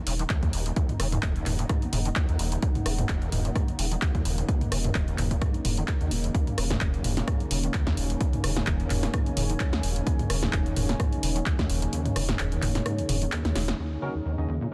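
Hypnotic and raw, this acid house excerpt at 129 BPM in Eb minor swings its 16ths over a gritty, squelchy sawtooth acid bass riff under a filter sweep, a thick sine sub bass, an overdriven, punchy analog drum machine with handclaps, hi-hat, rim click, snare and toms, an up-front dry electronic kick that drops out at 11.9 seconds before a drum fill at 13.4 seconds, a warbling vintage pad holding an Ebm7 chord, and a moody ambient pad with built-in reverb in the background. The pads and basses pump to the sidechain in a dense, heavily limited mix, with bright, barky electric piano stabs through chorus and delay arriving at 14.0 seconds.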